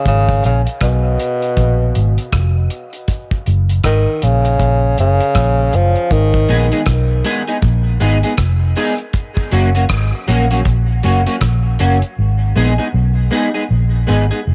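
A swung 79 BPM dub reggae groove in 4/4 opens this hazy, spacious excerpt, with a damped 70s drum kit of hi-hat, tight kick and rim click sitting dry beneath a dark, round, foam-muted bass that stays up front through a G#m to F# progression. A breathy tenor saxophone carries the melody first, all subtone, light vibrato and scooped notes soaked in dub echo and cassette grit, until it gives way at 6.9 seconds to a clean, picked electric guitar that entered at 6.5 seconds with analog chorus, high-pass filtering and its own dub echo. The drums drop out at 12.2 seconds, leaving bass and guitar in a small-room, home-cassette ambience.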